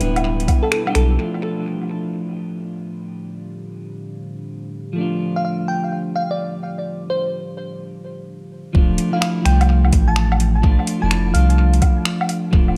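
Ghostly and wistful, this future garage excerpt at 127 BPM in D dorian sways on a 66% sixteenth-note swing, moving from Em7 to Dm. A dark, clean picked electric guitar accompanies throughout under dub echo and sidechain pumping, while a deep, detuned ambient pad holds mellow, chorused chords until 7.8 s. A round, soft sub bass, an overdriven, knocking electronic kick and a garage kit of finger snaps, metallic hats and woodblock all appear briefly at the start. The bass and kick return at 8.7 s after a short break, and the kit rejoins them soon after. A bell-like, warbling FM electric piano carries the melody through chorus, phaser and analog delay, and the whole mix sits in an echo-heavy digital ambience.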